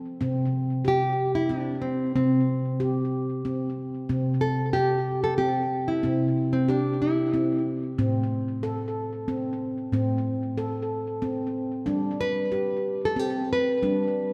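Meditative world music in a gentle three-beat metre, with a calm, unhurried mood, cut from a longer piece. A handpan sounds from the start and carries rippling arpeggios through the whole 14.3 seconds, its nitrided steel notes ringing and mellow under soft fingertips. A fingerpicked nylon-string guitar enters at 0.9 seconds with a full-bodied classical melody, drops out at 7.6 seconds, and returns at 12.2 seconds, with the odd finger squeak audible. The harmony moves from C5 to A minor and then G. Both instruments sit up front with delay, while a lush concert hall reverb with a long 2.4-second tail surrounds them.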